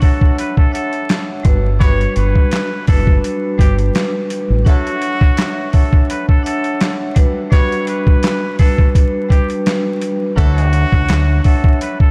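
Soaked in cathedral reverb and vinyl crackle, this dreamy, soulful boom-bap hip-hop excerpt at 84 BPM in D major sets a nasal, straight-muted jazz trumpet melody with scooped notes over ringing vibraphone chords moving between Dmaj9 and Gmaj7, gritty pitched-down sampler drums with a thumpy kick, handclaps and hi-hat up front, a dark, round fingered dub bass that appears at 1.4 seconds and returns near the end, and a very quiet, loose horn section adding soft stabs from 1.8 to 10.8 seconds.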